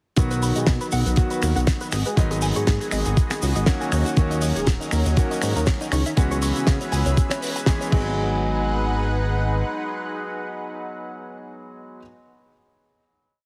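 A sleek, cosmic nu-disco piece opens at 0.2 s with an overdriven, thumpy electronic kick pounding four-on-the-floor up front, a dry 70s drum kit with a fat snare backbeat, hi-hat, shaker, finger snaps and crash, a glossy, funky syncopated synth bass, and a clear, intimate baby grand piano holding drop-2 chords with syncopated pushes through tape echo. A lush, detuned unison pad with chorus, phaser and sidechain pumping joins, and a twangy, direct-recorded clean guitar repeats a 16-step riff in the background while a round, very quiet octave-layered synth lead adds short phrases. The drums stop at 8.0 s, and the bass carries into the final hit until 9.6 s while piano and pad ring it out in a light studio reverb with a heavily compressed, radio-style sheen.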